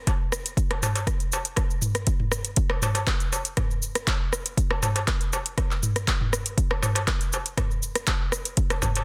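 A straight 4/4 groove at 120 BPM drives this spiritual, hypnotic house fragment, where an up-front electronic kick drum, layered and punchy, anchors an electronic afro-pop drum kit of handclaps, metallic hi-hats, rim clicks, shaker and toms, while a crisp, saturated metal-shell darbuka adds compressed acoustic percussion, all in a dry, dense and heavily limited modern mix.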